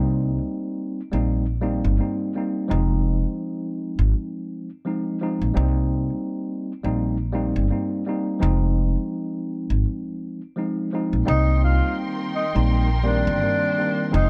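A dark, lightly reverberant small-room sound frames this gritty, reflective hip hop fragment at 84 BPM in C minor, swung on the sixteenths. A worn, slightly out-of-tune tine electric piano with a cassette-tape tint moves between Cm7 and Fm7 over a woody, thumpy pizzicato upright bass on gut strings. At 11.3 s a breathy, whispered tenor saxophone with subtone, scooped notes and delay takes the melody, joined by a lush bowed string section playing soft-attack sul tasto chords.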